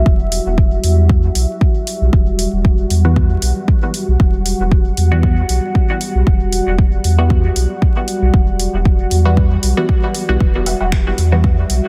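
Hazy and hypnotic, this dub techno excerpt rests on a single Emadd9 chord with a gently swung sixteenth-note feel. A moody pad of detuned sawtooth unison with a sub octave holds sustained chords through chorus and its own built-in reverb, breathing with sidechain pumping. Beneath it, a clean, smooth pure sine sub bass, thickened by tube saturation, pumps along. An up-front, layered electronic kick with a deep punch anchors the groove, while a quieter deep house kit adds finger snaps and dark hi-hats. From 3.0 s a muted, detuned chord stab enters, its filter sweeping through phaser and dub echo, and at 10.7 s a second stab pluck in a higher register flickers briefly in the background as a riff, all over a prominent bed of vinyl crackle and little room reverb.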